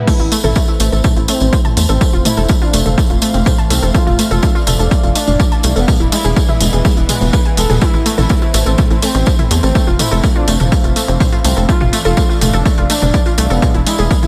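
A deep, moody sawtooth pad opens this melancholic, cinematic melodic techno excerpt at 124 BPM in A harmonic minor, joined almost at once by an overdriven, up-front electronic kick, a tight, saturated sequencer bass, a warbling lo-fi pluck playing arpeggios through cassette-tape coloring and delay, a smooth portamento lead with vibrato and analog delay, a jingly acoustic tambourine and a background analog drum machine of crash, hi-hat and toms, while a very quiet, swarming granular drone enters at 3.1 s, and the pad, bass, pluck and lead pulse with sidechain pumping over an Am–F–Dm/F–E progression.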